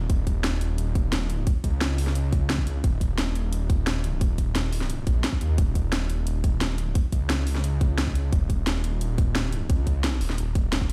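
Played back on a big sound system in a bare stone room, this futuristic, aggressive dark technical drum and bass excerpt at 175 BPM pairs a thick, detuned sawtooth bass with chorus, overdrive and sidechain pumping, spanning Eb1 to Eb2, against a tight, up-front electronic kick and an overdriven kit of cracking snare and bright hi-hats, all running from the opening to 10.9 seconds.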